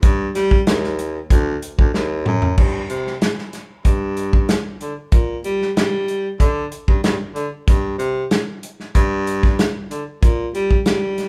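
A straight-eighth soul blues groove at 94 BPM in 4/4 sets a mournful, brooding mood in this short excerpt cut from a longer piece, where a baritone saxophone carries the bass line with smooth-topped vibrato up front, while an acoustic soul drum kit with dark cymbals, a medium-tuned snare and a tight kick plays throughout, marking the shift into the second section with a drum fill at 1.9 seconds, all captured as a band playing live in one room with light reverb.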